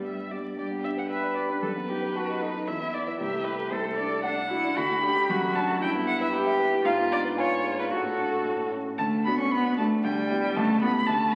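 Heard through the crackle of a very old 78 rpm record, with its top end dulled and a wet recital hall reverb surrounding the players, this short excerpt captures a quick, graceful classical-period movement for piano trio. A rich violin carries the melody with vibrato and portamento, sounding expressive yet slightly distant. Beneath it, a focused cello sings a smooth-topped second line, also with vibrato, while a dark, mellow grand piano supplies intimate accompaniment, its action noise clearly audible. The harmony stays cheerful and poised, darkening for a moment with a diminished chord at 6.8 seconds, and a fresh passage opens at 9.0 seconds and runs until the cut at 11.3 seconds. The vintage character of the piano and the aged disc lend the cheerful music a faded, old-world charm.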